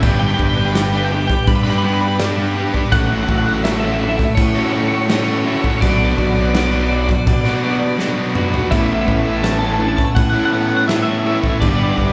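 A clean, compressed twelve-string electric guitar carries the melody with harmonic tremolo over a pure, chorused organ-like pad, while a very quiet, twangy guitar at the edge of break-up plays arpeggios and bright distorted and thick fuzz guitars churn out riffs in the background. A round, punchy fuzz bass and a loose indie drum kit with a tight kick and rolled-off top drive this cinematic, hopeful post-rock passage, with a drum fill at 8.0 seconds before a dark, ringing handpan slips in with very quiet arpeggios at 8.7 seconds. The band sounds like it is playing live in one room, bathed in a wet, large studio reverb, and the passage is cut from a longer piece.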